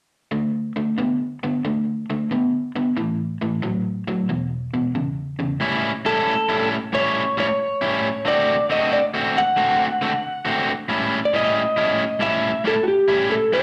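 Blues in A mixolydian at 91 BPM, with a swung 4/4 feel that is rollicking and gritty, heard live through a club PA with moderate room reverb. An overdriven, picked electric guitar sits up front with a riff from 0.3 s, touched by slapback echo, as the harmony moves through D5, A5 and E5 before settling into A7, D7 and A7. At 6.1 s a slightly broken-up, compressed slide guitar played with fingerpicks takes the melody, carrying plate reverb and slapback echo until the excerpt cuts off at 13.6 s.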